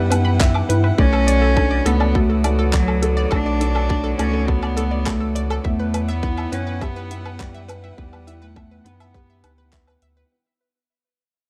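Piano and strings electronica at 103 BPM in 4/4, melancholic and hypnotic, this piece sits on a drop that begins fading out at 1.0 s, moving from Em7 to Bm7 and back to Em7 at 5.6 s. A floating, sul tasto cello carries the melody up front while a bowed string quartet holds smooth chamber chords in the background, a bright analog pluck runs sawtooth-edged arpeggios with chorus and tape echo, and a felt-muted upright piano plays a boxy, mellow riff through tape echo. Underneath, a round sine sub bass, the string quartet and the pluck all carry sidechain pumping, while an overdriven, tight electronic kick sits up front and a layered deep house kit adds handclaps, hi-hat and woodblock in a dark, lightly reverberant production.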